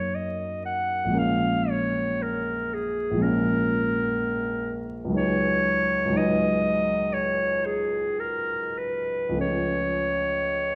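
Impressionist classical duo in 4/4 with a dreamy, pastoral mood and a freely rubato feel, where an up-front clarinet with a clear, vintage tone carries the solo melody while a warm grand piano supplies close accompaniment, both bathed in a wet recital hall reverb with vinyl crackle as the harmony drifts from F#6 through C#11 to C#aug7 in this short passage cut from a longer piece.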